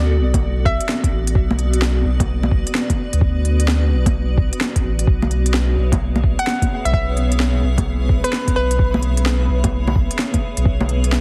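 A round, up-front sine sub bass pumps beneath a blurred, detuned granular cloud pad in this ghostly, rainy future garage excerpt at 129 BPM with a swung 16th feel, as a muffled, pitched-down kick and an overdriven kit of woody snare, crisp hats and bongos, re-recorded in a large room, enter at 0.3 s, a hollow, bouncy square pluck with chorus and tape echo flickers in at 0.7 s and later returns, and a reversed, dreamy triangle texture swells in the background from 6.2 s, while the chords move from Bm7 to C#m/B inside a heavily compressed, radio-like digital ambience.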